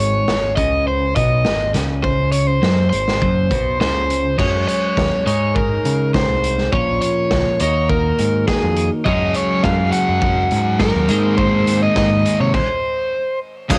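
A dry, cassette-taped home recording opens this upbeat, wistful indie rock excerpt at 103 BPM, where an up-front overdriven lead guitar with tape echo carries the melody over a clean, compressed twelve-string riff, a growling overdriven picked bass and a gritty, saturated garage drum kit with a punchy kick. A dark, thick fuzz guitar with lush chorus and tape echo joins the riffing at 9.1 seconds as the chords move through suspended and minor colours. The band stops at 12.5 seconds, and at 13.7 seconds a reedy tonewheel organ on a slow rotary speaker and a grainy tube shaker appear in the background.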